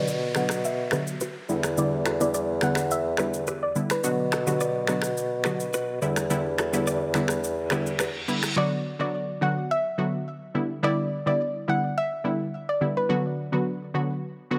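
A bassoon with classical-style vibrato sits up front, playing the low bass line for the first 8.2 seconds of this smooth, mellow afrobeats fragment in B minor at 106 BPM, moving between Bm and Em7. A bright, detuned sawtooth analog pluck with chorus and a filter sweep carries the accompaniment throughout, a soft, dark pluck with chorus and digital delay sings the melody in two phrases, and a clean, scooped, direct-recorded electric guitar riff with spring reverb and delay sits in the background. Produced electronic shaker, finger snaps and rim click keep time alongside a downlifter and reverse cymbal that stop at 8.6 seconds, heard in a lightly reverberant space.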